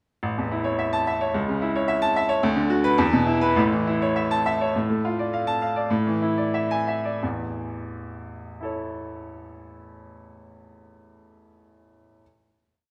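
A bright baby grand piano sweeps through brilliant, sparkling arpeggios up front in this short classical virtuoso study, its rubato 2/4 flow broadening from 4.2 seconds into a coda and then a final chord held at 7.2 seconds within a moderate scoring stage reverb.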